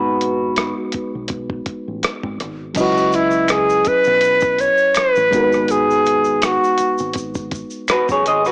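A breathy silver concert flute carries the melody from 2.8 to 7.2 seconds, close-miked and up front with a straight, tongued tone, floating over a smooth, introspective neo-soul groove at 82 BPM in C# minor with a gentle 16th-note swing. Underneath, a barky, reedy electric piano plays the accompaniment throughout, lightly overdriven and bright through its built-in speakers. A deep dub fingered bass holds a dark, round, punchy low end, while a dusty sampler-style drum kit enters at 0.2 seconds with a gritty, thumpy kick, hi-hat, rim click and crash cymbal. An electric guitar through a small old amp adds a slightly broken-up, fingered second line in brief phrases at the start and again near the close, and a vintage, band-limited tube shaker with finger snaps joins alongside the flute. The harmony moves from G#m7 to C#m11 and back, and the whole cut, taken from a longer piece, has the small-speaker charm of a home cassette recording bathed in moderate spring reverb.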